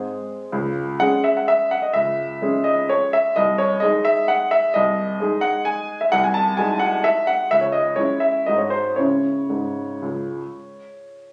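Bittersweet and nostalgic, this short piece cut from a longer work is a classical piano waltz in 3/4 and C# minor, tuned to A4 = 441 Hz, moving with a rubato feel between 108 and 138 BPM. A solo upright piano with a woody, polished tone sits up front across its B#1 to A5 range, circling through G#, C#m and G#7/B# before settling back on C#m at 9.0 s. The sound carries a moderate large-studio reverb with a club-like ambience and noticeable compression, as if captured on a phone in the room.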